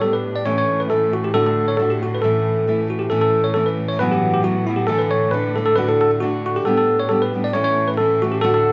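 A bell-like tine electric piano carries the melody up front, bright and clean through its built-in speakers, in this lively, rollicking Celtic folk excerpt in A mixolydian at 136 BPM in 2/4 with a gentle swing. Beneath it, a dark fingerpicked steel-string acoustic guitar supplies the accompaniment with audible finger squeak and an auditorium character, while a bowed cello holds a smooth, intense drone on A with light vibrato. The trio sounds like a band playing live in one large studio with moderate reverb, the chords moving from A through D and G before settling back on A near 7.5 seconds.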